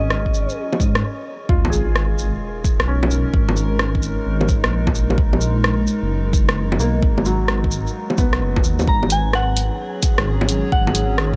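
Future garage at 130 BPM in G# dorian with a swung 16th-note feel, ghostly and wistful in this short excerpt: a felt-muted upright piano plays soft, intimate accompaniment with tape echo and sidechain pumping beside a warbling, nostalgic lo-fi pad with chorus, phaser and reverb, over a deep, rumbling detuned saw bass that sits up front with its own sidechain pumping, while a layered electronic kick and a small-room deep house kit of bongos, hi-hat, rim click and shaker carry the groove; a pure FM synth bell with chorus, 12-bit sampler grit and tape echo carries the melody briefly at the start and again from 8.9 seconds, a very quiet reversed, dreamy texture appears at the opening and close, and after a brief stop at 1.0 seconds a faint sub drop lands at 1.5 seconds, all set in light reverb.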